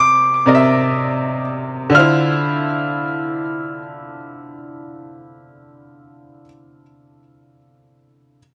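A warm concert grand piano carries a high, long-sustaining melody through tape echo until 6.4 seconds, while a brilliant, up-front baby grand with short sustain accompanies it from C9 to Dm9 at 1.9 seconds and plays on to 8.4 seconds in this late-night, moody R&B fragment in free time and D minor, captured as a dry, gritty hardware recording.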